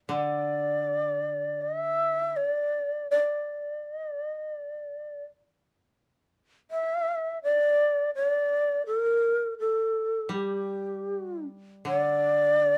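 A breathy, end-blown bamboo shakuhachi sings an expressive, vibrato-laden melody up front in this meditative, still excerpt of Japanese traditional chamber music at a rubato 82 BPM, while a dry, woody koto played with fingerpicks adds soft low accompaniment at the start and returns at 10.3 seconds, all in a dark, warm production with light reverb.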